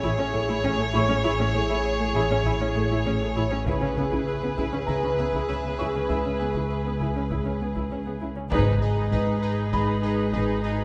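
Veiled, con sordino chamber violins carry the melody over a lush symphonic violin line, close muted violas and very quiet cello and double bass sections in this ominous, uneasy suspense film score excerpt at 99 BPM in G# minor, where a mellow soft-mallet marimba riff, a sawtooth analog drone with chorus, a tempo-synced pulsing gated triangle texture, and an intimate clear grand piano with audible action noise fill the wet scoring-stage reverb, a hard-stick taiko ensemble enters at 3.7 seconds, and a huge, bright impact lands with a band accent at 8.5 seconds as the harmony moves from Amaj7 and C#m7 to G#m.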